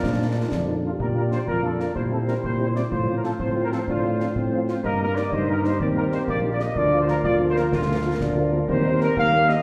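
A steady 6/8 march pulse drives this festive, proud military-style excerpt for wind band, with concert snare and bass drum keeping time under dark cymbals while an up-front, mellow tuba anchors the bass. A dark, distant trumpet section carries the melody, joined by a clear woodwind section with light vibrato and a roomy solo euphonium on second lines, while a very quiet French horn section fills in accompaniment from 0.2 seconds. A soft-attacked trombone section holds background chords only until 0.8 seconds, and the whole band sits in a wet concert hall reverb.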